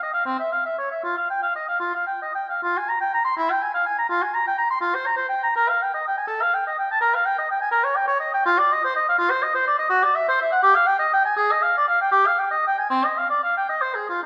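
A lone oboe opens this grave, introspective baroque-style fantasia, its warm, roomy tone carrying through a recital hall with a moderate reverb of about 1.5 seconds. The unaccompanied line moves in a flexible 6/8 at roughly 70-86 BPM in dotted quarters, the rubato lending it a searching, improvisatory character. Ranging from C4 up to C6, the oboe sits up front in the mix yet keeps a faintly distant quality. The music begins in F minor, shifts into a new section at 2.6 seconds, and turns toward C minor from 8.5 seconds, deepening its sombre, inward mood. This brief passage of about 14 seconds is cut from a longer piece.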